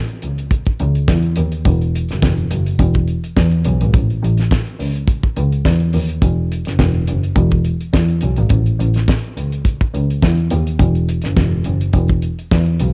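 A lightly swung sixteenth-note groove in 4/4 drives this celebratory, joyful disco passage, cut from a longer piece. A damped 70s acoustic drum kit enters at 0.1 seconds with hi-hat, a tight kick and a fat snare, sounding dry and up front, with the drums carrying a cassette tape character. A clear double bass joins at 0.2 seconds, played by one bowed player with light vibrato, its earthy tone moving between E1 and E2. The whole section, running to 12.9 seconds, has the close, dry feel of a home recording on cassette, tuned slightly above standard pitch at A4 = 444 Hz.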